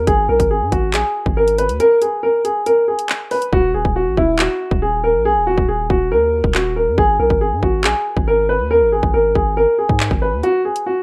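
Menacing and ominous, this half-time drill passage cut from a longer piece puts a dark, worn, boxy grand piano up front behind a low-pass filter to carry the melody over a deep, sine-toned 808 bass with fast attack and long decay, while an electronic drum kit of handclaps, bright hi-hats and a hard-clipped kick drops its hats from 3.5 s to 10.4 s, all set in wet studio reverb with a rough home-demo mix.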